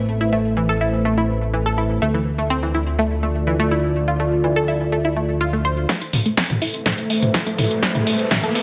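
A straight 4/4 pulse drives this dark, dramatic melodic techno fragment, where a fat, saturated sawtooth bass sits up front under moody, full-bodied pad chords and a bright, nasal analog pluck arpeggio coloured with chorus, phaser and tape echo, all three pumping against the sidechain over Amadd9 and Dm harmony in a lush hall reverb. At 5.9 s the bass drops out as a build-up begins: a punchy analog drum machine plays a fill of hi-hat, snare and toms up front, an overdriven kick sits in the background, and a filter sweep moves across the arpeggio. A background riser joins at 6.8 s and carries the tension to the cut.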